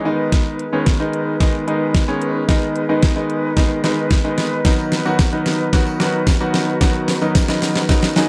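Dance-pop at 111 BPM in 4/4, confident and bittersweet, building up over a G#m to B change in this brief cut from a longer piece. A polished, clear concert grand piano with deep bass and short sustain sits up front with a pumping sidechain, while an airy flute section holds mellow, vibrato-tinged chords in the background, and an overdriven, electronic pop kit with a knocking kick and deep snare plays a fill from 0.3 seconds. A jingly tambourine joins very quietly at 4.6 seconds, and the piano adds a fill at 7.9 seconds in the dry, close 1970s-style studio sound.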